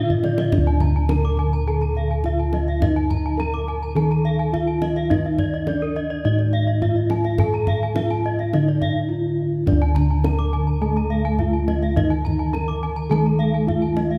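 A brilliant, ceremonial Balinese gamelan excerpt opens with a quick fill on deep, hard-handed kendang as the bronze metallophones ring out together: a mellow, soft, padded-mallet melody, two bright horn-mallet arpeggio lines (one carrying tape echo) shimmering with paired-tuning beats, round, beating bossed gongs up front carrying the bass, and a dry, full, close-miked wooden-mallet accompaniment that drops out after 0.5 seconds and returns at 9.7 seconds, all in a dark, warm concert-hall reverb.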